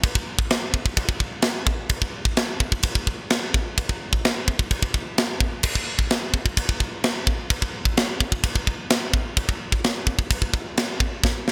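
A tight, acoustic metal drum kit drives this heavy, epic passage at 129 BPM in a straight 4/4, its tight kick, medium-tuned snare and bright china and crash cymbals sitting up front in an airy, big-room sound. Gated reverb on the kit and a light overall reverb shape the bright, polished 1980s-style digital production, and a drum fill arrives at 11.2 seconds before the excerpt, cut from a longer piece, ends.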